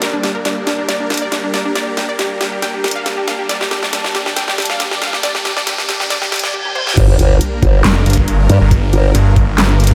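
A menacing heavy wobble dubstep excerpt in G minor at 138 BPM in half-time opens with a punchy detuned unison pluck melody trailing tape echo over a lush, pumping supersaw pad, an airy, chorused background pad, a riser and reverse cymbal, and an up-front electronic kit with a huge snare that fills through the build-up until the drop at 7.0 seconds brings in a knocking background kick, a wobbling formant-filtered bass with chorus and overdrive, and, from 7.8 seconds, a snarling, growling distorted saw bass.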